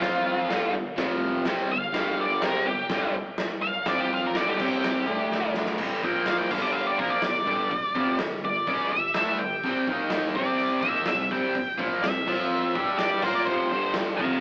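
A raw, rowdy garage rock excerpt at 125 BPM opens with a bright, double-tracked overdriven guitar riff, a dark octave-fuzz lead guitar melody colored by tape echo, and a gritty drum kit with a punchy kick, all set in light reverb with a rough rehearsal-room, AM-radio sound, until a drum fill at 5.3 seconds launches the lead guitar into a solo from 5.8 seconds.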